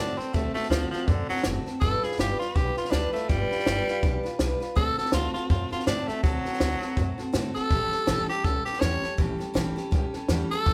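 Swung eighths drive this rowdy, rollicking rockabilly fragment in 4/4, cut from a longer piece, with a compact cocktail drum kit joining at 0.2 s on hi-hat, tight kick and a high-tuned snare. Up front, a gritty tenor saxophone carries the punchy, pop-style solo melody with vibrato, over a bright, full-bodied jumbo acoustic guitar picking through D7, G7 and A7 and a woody, thumpy gut-string upright bass played pizzicato. The band plays live in one stone room whose moderate reverb surrounds the sound.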